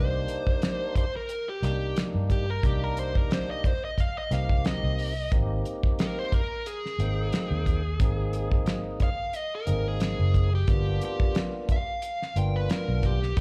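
A smooth, overdriven lead guitar with slapback echo solos between G4 and G5 in this smoky, brooding 90 BPM soul blues excerpt in C minor, moving over Cm7, Abmaj7 and G7#9, while a fat tonewheel organ with key click, chorus vibrato, slow rotary speaker and slapback echo accompanies beneath, a round, foam-muted fingered electric bass sits up front, and a damped 70s drum kit with a tight kick and a rolled-off top enters at 0.3 s, the whole band heard as a live club gig through the venue's PA with little reverb.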